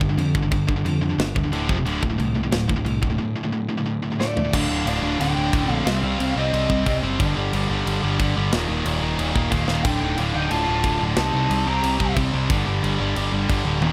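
A tight, bright distorted guitar riffs up front over a sludgy overdriven guitar in the background, a growly picked electric bass and a tight studio drum kit with china, splash and crash cymbals, in this relentless, epic heavy metal excerpt in D phrygian at 181 BPM, where a drum fill at 4.2 seconds leads into a half-time section from 4.5 seconds and a dark, bluesy overdriven lead guitar carries the melody with a high-gain second guitar line behind it in two passages, the second starting at 9.5 seconds, in a dry room.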